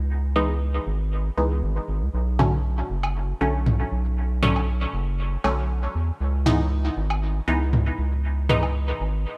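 Dub techno in a straight four, hazy and cavernous, cut from a longer piece, with muted, detuned chord stabs carrying chorus, phaser and dub echo over C#m7 and Bm7 harmony. Beneath them a round analog bass sits up front, deep and mellow with an evolving, wave-folded tone, sustaining from the start until 9.3 seconds. Electronic toms and woodblock enter at 2.4 seconds, layered and tape-warm with their own dub echo, all inside a light digital ambience.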